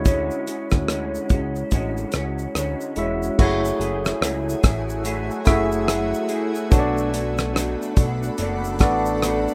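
A rough home-demo sound with moderate room ambience frames this wistful, mellow indie bedroom-pop fragment at 72 BPM in F# minor, where a barky, lightly overdriven tine electric piano and a slightly broken-up, chorused guitar through a small old amp ride over a fat, detuned analog bass and an up-front, dry, damped 70s drum kit with dark cymbals, rim clicks and shaker, moving from Dmaj9#11 to F#m9 and Bm7 as a shimmering, ethereal, phased pad drifts in at 4.4 seconds.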